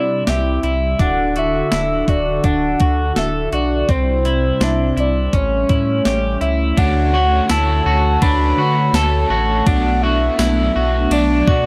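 Lightly reverberant and floating, this ethereal dream pop excerpt pairs a round, octave-layered synth lead carrying the melody with a hollow, flute-like pad, twangy arpeggios from an electric guitar at the edge of break-up through lush chorus and delay, a thick saturated sub bass up front, a faint sparkling glockenspiel and a crisp, overdriven 8-bit drum machine with a thumpy kick, before a bright, crunchy double-tracked guitar with tremolo slips into the background at 6.8 s as the key shifts from D mixolydian to D major.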